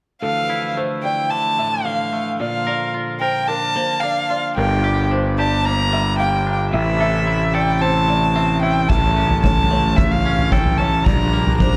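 A rich, expressive violin carries the melancholic melody with vibrato and portamento up front over twangy, scooped electric guitar and felt-muted upright piano arpeggios, both touched with analog delay, while a very quiet pedal steel guitar holds sustained chords with volume swells, growly fuzz bass enters at 4.6 seconds, and a soft-mallet drum kit with dark cymbals and a boomy kick joins at 8.9 seconds in this cinematic post-rock excerpt.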